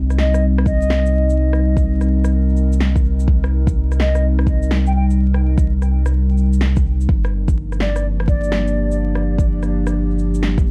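Future garage at 126 BPM in C minor with a 16th-note swing, this ghostly, nocturnal excerpt sets a warbling, lo-fi pad of sustained chords, given chorus, 12-bit sampler grit and sidechain pumping, over a round sine sub bass that also pumps, moving from Cm7 to Gm7 at 7.1 seconds. A deep, up-front electronic kick enters at 0.7 seconds beside layered rim clicks, shaker and a woody snare in small room ambience. A distant, hollow silver concert flute carries the melody with vibrato and tape echo until 9.0 seconds, all within an echo-heavy mix dusted with vinyl crackle.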